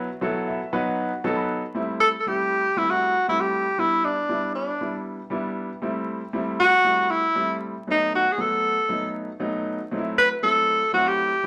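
Soul with a passionate, driving feel, where an intimate grand piano with audible action noise opens on a fill before a breathy, up-front tenor saxophone enters at 2.0 seconds with a jazz-styled solo of scooped notes, vibrato and a smooth top, all set in a wet club reverb beneath a layer of vinyl crackle.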